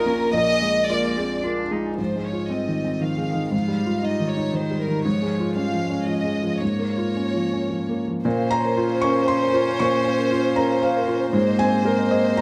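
A soft, up-front felt-muted upright piano with audible action noise opens this intimate, hopeful neoclassical excerpt in a rubato 3/4, joined from the start by a chamber violin section carrying the melody with vibrato and a sul tasto touch and by a distant, floating cello on the second line, while a vibraphone played with soft mallets adds airy, ringing arpeggios through tape echo from 0.1 to 1.9 seconds and again from 8.3 seconds, the whole set in light reverb and captured by close, detailed microphones.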